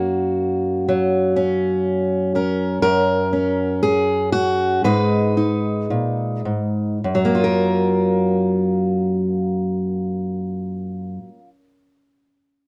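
Peaceful and pastoral, this short fragment of folk music features a lone fingerpicked steel-string acoustic guitar, placed up front and playing from 0.0 to 11.5 seconds. The pace is slow and unhurried, between 51 and 65 BPM in a straight 4/4, and it gradually slows down over the first 7.0 seconds. The guitar has a warm auditorium tone and spans a range from F#2 to B4 in F# major, tuned slightly sharp with A4 at 445 Hz. The harmony moves from F# to G#madd9 at 4.8 seconds and settles on F#maj7 at 7.0 seconds. Light reverb and a dark, warm production give the guitar a gentle glow.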